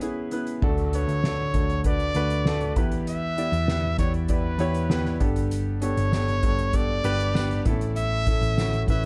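A brilliant solo trumpet carries the melody from 0.9 seconds, its pop-style line shaded with vibrato and scooped notes in this hopeful, anthemic piano-driven pop fragment cut from a longer piece. An intimate, up-front concert grand with audible action noise and deep bass moves through E6, D, Em, Gadd9 and A. A soft-mallet drum kit with a fat snare and boomy kick sounds in a big room, while a round, hollow-body picked electric bass enters at 0.6 seconds. A jingly tambourine sits in the background from 6.1 seconds, all set in light reverb with a dark production.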